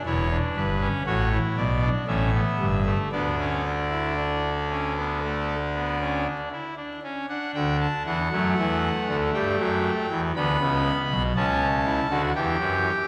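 Elegant and lively, this short cut from a longer baroque-style fugue in three parts features a solo pipe organ on its brassy trumpet stop, bright and up front with a crisp chiff across a span from E1 to B5, set in a wet church reverb with vinyl crackle as it moves from its opening section into a second one at 7.3 seconds.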